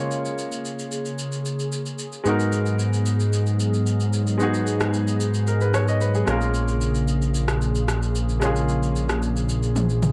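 A clear, polished baby grand piano and a hollow, flute-like pad open this late-night amapiano excerpt together at 0.0 seconds, the piano comping on an A#m7 chord while the pad holds long, slow-blooming chords thickened by ensemble chorus. A deep house drum kit joins almost at once, its rim clicks, shaker and toms carrying an electronic, tape-coloured character at a straight 112 BPM in 4/4. At 2.3 seconds a fat, detuned analog bass arrives with a fast attack and a ring-modulated edge, sitting up front and louder than the other parts as the harmony moves to G#m7 before returning to A#m7 at 6.3 seconds. The production is dark and warm, with light reverb and a digital ambience around the parts. A short drum fill at 9.8 seconds closes the fragment, which is cut from a longer piece.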